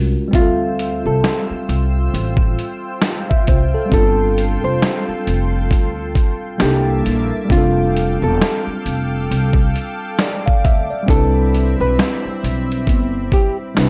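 The recording has a dry, gritty hardware character with only light reverb, and it is cut from a longer piece of mellow, nostalgic lo-fi hip hop with a lazy swing. A worn, slightly out-of-tune tine electric piano and a woody, pizzicato upright bass on gut strings open the track together at 0.0 seconds, the bass sitting up front with tube saturation adding thump. At 0.3 seconds a sampler-style soul drum kit arrives, compressed and carrying 12-bit grit, with a thumpy kick, medium-tuned snare, hi-hat and finger snaps re-recorded in a large room. A lush, detuned unison pad enters at the same time, its thick sawtooth and square-wave body softened by chorus and a low-pass filter into slow-attack sustained chords. From 0.4 seconds a dark, clean, fingered hollow-body jazz guitar carries the melody in a narrow middle range over a drift from Dm11 through G9sus4, C13 and F69 to Cmaj9.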